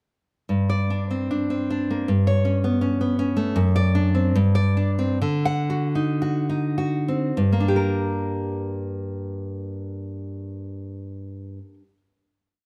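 A fingerpicked nylon-string guitar plays this short, intimate and melancholic romantic solo piece in G minor. Its warm, up-front tone carries rippling figuration and audible finger squeak, and the rubato 2/4 pulse moves between 49 and 82 BPM. The playing slows from 2.8 seconds until a final G minor chord arrives at 7.4 seconds and rings to 11.7 seconds. Close, detailed miking sits in a moderate recital-hall reverb.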